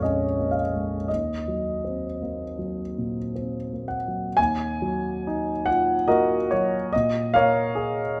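Closely miked and lightly reverberant, this intimate 8.2-second fragment of impressionist classical music presents a solo concert grand piano, with audible action noise, deep bass and long sustain, playing a nocturnal, hazy passage in Eb minor and 3/4 at a rubato 53-74 BPM, moving from Bbm7 and Ebm6 into a second section at 4.4 seconds that opens on Ebmadd9 before returning to Bbm7.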